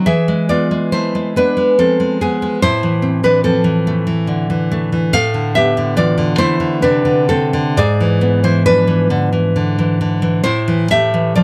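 A wistful, passionate romantic piece for solo classical guitar in a rubato 3/4, where a single bright, full-bodied, fingerpicked nylon-string guitar with fresh strings sits up front in a dry, close 1970s-style studio sound with a touch of small-room reverb, moving from E through Am, Bm7b5/A and E7/G# before settling on A5 at 10.5 seconds in this brief fragment of a longer work.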